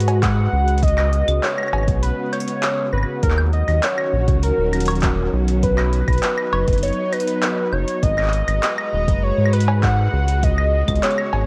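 Intricate and cerebral, this IDM excerpt moves at 100 BPM in a straight 4/4, cut from a longer piece and tuned slightly low at A4 = 439 Hz. A velvety, detuned synth lead carries the melody between Gb4 and Gb5, its smooth, full-bodied tone colored by chorus, vibrato and a cassette-tape character. Beneath it, a silky string machine holds slow-attack chords with a long release and ensemble chorus, while a round, up-front analog bass blends sawtooth, sine and triangle into a deep, evolving line. An overdriven analog drum machine brings claves, cowbell, handclaps and metallic hi-hats through a large room, joined from 0.2 s by a deep electronic kick heard in a small room. The harmony cycles through Abm9, Db7sus4, Ebm7 and B under light reverb and a worn, warbling old-tape drift in pitch.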